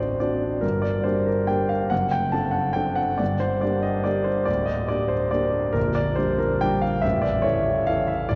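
Bittersweet and nostalgic, this short excerpt of a classical piano waltz in G minor moves at 140 BPM in 3/4 with a flexible, rubato feel. A solo grand piano sits up front, clear and intimate with audible action noise and long sustain, ranging from A0 to A5 as the harmony sways between D7 and G minor before settling on A at 7.0 seconds. A deep cathedral reverb and a dark production surround the instrument.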